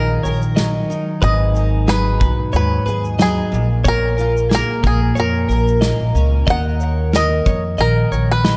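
A dark production with light reverb and a small-room ambience frames this short section of tender, reflective acoustic pop in E-flat minor, moving at 91 BPM in 4/4 with a gentle sixteenth-note swing. The upright bass sits up front, its pizzicato notes woody and warm against a full-bodied, double-tracked jumbo steel-string guitar that carries the picked accompaniment, finger squeaks and all. Over them, a bright, twangy bluegrass banjo played with fingerpicks takes the melody, its percussive attack trailed by tape echo. Further back, a clean, compressed electric guitar recorded direct picks arpeggios with a warbly pitch drift. A loose indie kit enters at 0.2 seconds with a tight kick, medium-tuned snare and shaker, its small room pumping audibly. The harmony moves from Ebmadd9 through Abm7 and Bbm before returning to Ebmadd9 at 6.5 seconds.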